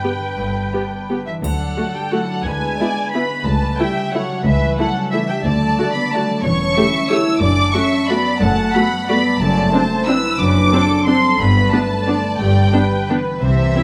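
A rubato waltz in 3/4 sways between 159 and 200 BPM in this sweeping, festive orchestral ballroom excerpt, set in D major before turning to G major at 9.4 s. Lush violins carry the melody up front with a second violin line beneath, while rich, smooth violas fill the accompaniment, a bright, ringing harp spins arpeggios, and warm cellos with woody double basses hold the bass from 0.4 s. A mellow French horn section enters at 1.3 s with tight sustained chords, a faint triangle sounds briefly in the background, and the close, detailed sound sits in a moderate recital hall reverb.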